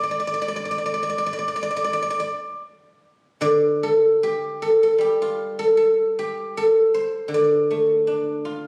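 Contemplative and elegant, this short excerpt of Chinese traditional music features a solo guzheng played with fingerpicks, its silvery, ringing tone sitting up front as it moves freely in rubato around 66-82 BPM in a D yu mode, spanning D3 to D5. The sound carries a moderate stage reverb that gives the strings a gentle halo, with a phone-in-the-room quality and compression. A second section begins at 3.4 seconds and runs to the close at 8.7 seconds.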